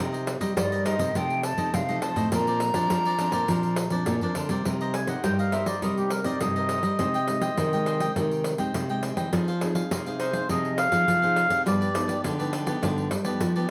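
Heard in a moderate studio reverb, this lively yet bittersweet samba and choro excerpt moves at 103 BPM in a straight 4/4, turning to C minor for its second part. Crisp picked cavaquinho, a fingerpicked nylon-string guitar with audible finger squeak, a full-bodied, deep nylon-string guitar bass line and a jingly, soft-handed pandeiro carry the accompaniment throughout. A breathy, hollow silver concert flute with vibrato plays a close-miked, tongued line from 0.6 to 4.3 seconds, and then a reedy, up-front accordion with slow beating takes the melody from 4.8 seconds.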